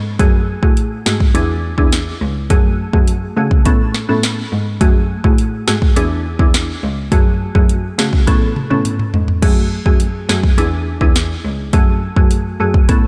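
A sultry, bouncy dancehall groove in F# minor at 104 BPM, this excerpt opens on a brief break before the drums, cello and pluck all come in together at 0.2 seconds. The afro-pop drum kit sits up front with an electronic, produced sound: a deep kick, sharp snare and metallic hi-hats, with crash cymbal and toms adding colour. A single bowed cello carries the bass line, smooth and even with vibrato, clear in tone yet placed at a distance. Above it, a glassy wavetable pluck plays the accompaniment with a fast attack and short decay, its crystalline, nasal, detuned character thickened by chorus and shaped by a noise layer and a filter sweep. The chords cycle through F#madd9, E7 and Aadd9, and a drum fill from 8.3 to 9.4 seconds leads into a second section that carries the groove to the cut at 13.1 seconds. The whole mix has light reverb and a soft top end.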